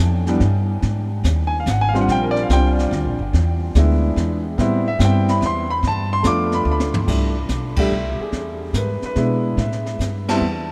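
Playful and warm, this jazz piano trio excerpt swings in a lilting three-beat time. The upright bass opens the recording at 0.0 s, plucked and woody with steel strings sitting up front, and the concert grand piano and brushed drum kit join a moment later. The piano carries the melody in the spotlight through the opening passage, sounding intimate and natural with deep lows and audible action noise, over changes that move through chords such as Am7, G7 and C6. The drums stay dark and smooth, with brushes on a high-tuned snare, a boomy kick and dusky cymbals with a rolled-off top. A short drum fill at 6.7 s ushers in a second section marked by band accents, the first at 7.7 s. A moderate cathedral reverb surrounds the trio and sets it in a vast, echoing space.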